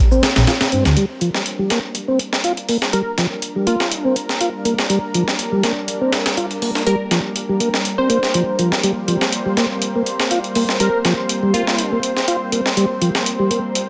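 A lightly swung breakbeat at 122 BPM drives this energetic, swaggering excerpt in G minor, its sampler-style kit gritty and compressed, with a high-tuned snare and filtered hi-hats sitting up front in a small room. A very quiet, tape-warm electronic shaker appears briefly at the start, while a deep, rumbling detuned saw bass growls for a moment near the start. A mellow, round tonewheel organ carries the riff through nearly the whole clip, lightly overdriven with a fast rotary speaker and tape echo, and a filter sweep runs across it from 1.0 seconds as the harmony settles on G minor. A lush, warbling pad with chorus and vintage 12-bit grit holds thick sustained chords underneath. From 2.9 seconds a punchy, catchy lead with vibrato and a moving notch sings the melody through an AM-radio tone and tape echo, all set in light reverb.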